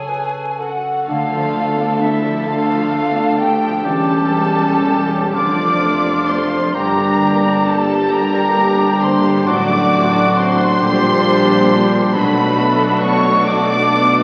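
Heard through the crackle of a very old 78 rpm record and the reverb of a scoring stage, this elegiac, melancholic excerpt from a slow romantic symphonic movement drifts in a rubato 6/8 at around 39-46 BPM in D minor. A distant, lush violin section sings the melody with expressive vibrato, while a second, background violin section, an airy flute group, a mellow clarinet, a solo cor anglais and a ringing, fingerpicked concert harp weave supporting lines and arpeggios. At 1.1 s a focused viola section, sustained French horn chords, and a very quiet bass of tuba, smooth cellos and double basses join in, shading the harmony as it moves from Dm through Gm toward a closing Bm7.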